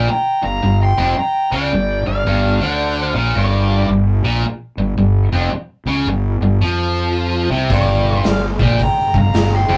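Blues rock in the power-trio mold with a southern rock streak, this gritty, heavy excerpt moves at 110 BPM with a swung feel in G minor, sitting on a single G minor chord. A bright, double-tracked overdriven rhythm guitar churns out the low riff throughout alongside a growly, fuzzed fingered bass, while two dark, distorted picked leads, an octave-fuzz guitar carrying the melody and a bluesy overdriven guitar on a second line, play from the start until 3.9 seconds and return at 7.7 seconds. A raw garage drum kit with a punchy kick, medium-tuned snare and hi-hat, saturated and pumping in a stony room, joins at 7.7 seconds, all captured as a rough rehearsal-room recording with tube saturation and a moderate booth ambience.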